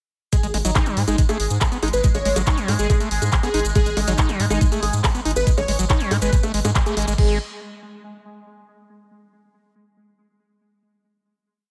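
A knocking four-on-the-floor electronic kick drives this short, psychedelic trance piece, joined by programmed bright hats, handclaps, bongos and crash from a layered drum kit, grainy hand-played cabasa sixteenths from a distant large room, and a round, deep analog bass galloping in sixteenths, while a squelchy, distorted acid line with accents and slides and a thick, detuned unison lead with vibrato both carry tape echo and sidechain pumping over a chorused, pulsing gated drone, the band hitting an accent at 6.8 seconds before a final note rings out from 7.2 seconds.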